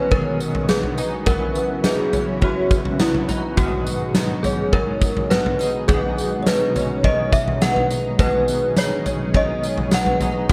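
A huge arena drum kit sits up front in this blissful, dreamy dream pop piece, cut from a longer work, its punchy kick, fat snare, tambourine and toms ringing in a big, natural room from 0.1 seconds onward. The tempo is 104 BPM in a straight 4/4 in B major, with the harmony moving from B6 through F#7sus4 and G#m7 before returning to B6. A mellow FM synth chime carries the melody, its inharmonic, fast-attack, decaying tone shimmered by ensemble chorus, tremolo and digital delay. Beneath it, a picked twelve-string acoustic guitar plays octave-doubled arpeggios with a woody, boxy character from old strings, treated with analog chorus and delay. Further back, a twangy, compressed clean electric guitar with tremolo and lush chorus supplies accompaniment, while a thick, warbling unison pad of detuned sawtooth and square waves holds slow-blooming sustained chords. At 6.4 seconds a very quiet kalimba adds soft fingertip plucks as texture, all set in a dark production with light reverb.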